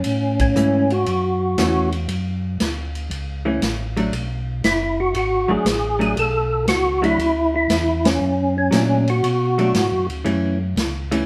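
Smoky and late-night, this short cut from a longer soul jazz organ trio piece swings at 118 BPM in 4/4, moving from F#m7 to Bm7 and back to F#m7 at 10.3 seconds. A fat, percussive tonewheel organ with key click, chorus vibrato and a slow rotary speaker carries the melody up front, while a round, lightly overdriven tonewheel organ bass sits beneath it, a dark, picked hollow-body electric guitar accompanies from 0.6 seconds, and a vintage drum kit with dark cymbals and a punchy kick keeps time on hi-hat, ride, snare and kick. The band plays live in a moderate stone room, hitting shared accents at 0.3 and 8.0 seconds.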